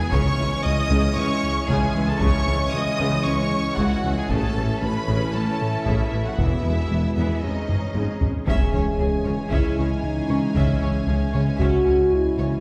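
Heard from further back in a wet scoring stage, this cinematic hybrid of orchestra and electronics feels vast and brooding, cut from a longer piece. A lush symphonic violin section carries a smooth melody over a chamber violin second line, with violas accompanying in the background as mellow French horns, vintage trombones and an evolving, warbling wavetable pad hold chords, while a dark gliding synth bass riff, a distant tuba, very quiet double basses and expressive cellos anchor the low end and a ringing harp-like synth pluck spins arpeggios. Taiko drums with heavy sticks play a fill from 7.7 to 8.5 seconds, and a huge, bright impact then lands at 8.5 seconds as the piece returns to its opening chord.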